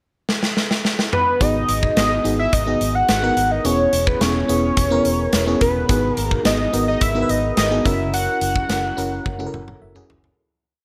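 A big rock drum kit opens the piece with a fill at 0.3 seconds, its punchy kick and medium-tuned snare sounding up front in a big room, before a fat analog lead enters at 1.1 seconds with a motif-based melody. This is a short, urgent and moody slice of 1980s-style pop in G# minor at 107 BPM, with a straight 4/4 feel that settles into a verse at 1.4 seconds over G#m7, E6 and F#7 chords. The lead is a sawtooth sound with a sub octave, filter sweep, vibrato, chorus and phaser, sustained and mellow, sitting high in the mix between B4 and F#5. Beneath it, a glassy FM electric piano with a bell-like attack and a noise layer plays syncopated, closely voiced chords with chorus, adding grace notes and a short fill near the end. A vintage muted fingered electric bass, dark, round and amped, drives eighth notes low between E1 and G#1 under the drums' big backbeat. Moderate spring reverb and small room ambience surround the band, and the whole piece fades out from 8.1 seconds, with a final drum fill arriving at 9.3 seconds.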